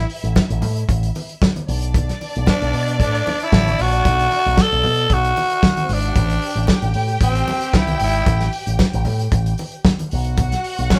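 A growling, breathy tenor saxophone carries the melody over a dark, woody string section and a round, envelope-filtered picked bass in this driving, sultry disco cut at 114 BPM in A dorian. A tight, saturated soul drum kit with a pumping room sound joins at 0.1 seconds, and bright, damped, low-tuned congas sit in the background from 0.4 seconds. The chords move from A5 to Bm, an A7 that omits the third, and B5, and the band sounds as if it is playing live in one room with light reverb, the raspy sax, gritty drums and amped bass up front and the lush bowed strings distant.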